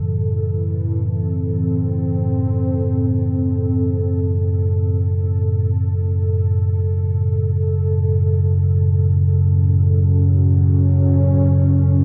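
Bathed in a huge, wet ambient reverb, this ominous fragment of dark ambient drone drifts in free time as a deep, rumbling drone sits low and up front beneath a sweeping, detuned pad whose warbling, vintage sustained chords shift from Am to F#m at 6.9 seconds.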